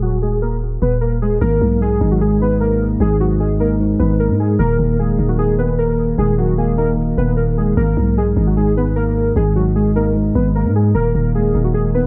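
Trap-flavoured hip hop at 151 BPM with a half-time feel in G# minor, this melancholic yet hard-hitting clip opens on a filter sweep as detuned, warbling lo-fi synth keys with chorus, low-pass filtering and digital delay carry the nostalgic melody over a growling, buzzy 808-style bass, and a mellow, clean tine electric piano joins at 1.4 seconds with chords moving from D#m through G#5 and G#m, all set in a dark production with light reverb.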